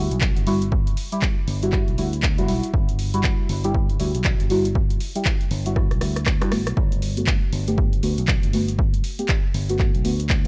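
An up-front, punchy analog-style electronic kick anchors this sunny, relaxed deep house fragment in G major at 119 BPM with a swung 16th-note feel, alongside an analog drum machine's handclaps, hi-hat and rim click (with a fill at 5.8 s), a warm, direct and amped fingered electric bass pumping with sidechain, and soft, dark, wave-folded chord stabs on Gmaj9 treated with chorus, phaser, sidechain pumping and digital delay, all inside a digital ambience.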